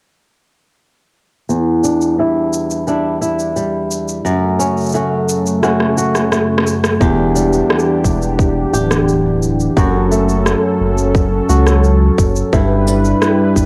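A dark, boxy flamenco guitar sits up front, thumb-plucking arpeggios from 1.5 seconds through a filter sweep and tape echo, joined by an overdriven electronic shaker and rim click in this autumnal, intimate folktronica piece at 87 BPM in E dorian, cut from a longer work. A smooth, detuned sawtooth pad with chorus enters at 4.3 seconds holding sustained chords over Em7 and F#m. After a drum fill, a tight electronic kick and a deep, round sine sub bass with tube saturation arrive at 7.0 seconds as the progression returns to Em7 and later moves on to G6, all within the moderate spring reverb of a home cassette recording.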